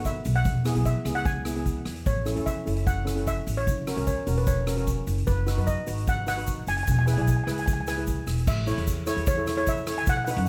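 Calypso at 150 BPM in 4/4 with a straight feel, this festive, sunny clip in A major is cut from a longer piece. A lead steel pan played with hard rubber sticks carries the melody with a metallic shimmer and a touch of tape echo, while cello pans struck with medium rubber sticks fill in an airy accompaniment beneath it. An upright bass with steel strings is plucked pizzicato, its woody tone sitting a little forward of the pans. From 0.1 seconds a street-band drum kit joins with a boomy kick, rim clicks, hi-hat and dark crash cymbals in a polished big-room sound, alongside a grainy egg shaker tucked in the background. The harmony moves through Eadd9, A, F#, B/F# and E before a new section arrives on A at 8.5 seconds, all captured with close, detailed microphones and little reverb.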